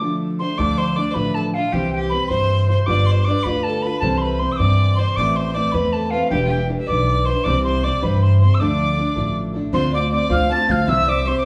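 An airy wooden whistle carries the melody up front in this wild, spirited Celtic jig excerpt in D dorian, moving at 105 BPM in 6/8 over a boxy picked archtop guitar and a thumpy, dark upright bass played pizzicato on gut strings. A rich, focused fiddle with light vibrato enters at 0.4 seconds on a second line. A hollow tenor recorder with a breathy chiff joins in the background at 9.7 seconds, and the live band sits in a small stone room with a one-second reverb tail.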